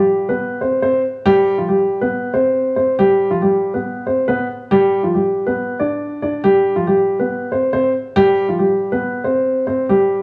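This hip hop piece is a menacing, tense fragment at 139 BPM in a half-time feel, carried entirely by a solo upright piano across its 10.2 seconds. The piano sits up front with a dark, woody tone and a slapback echo, moving from C5 to G at 3.0 seconds and back to C5 at 6.4 seconds. A moderate echo chamber reverb with a 2.2-second tail gives the sound a sense of space.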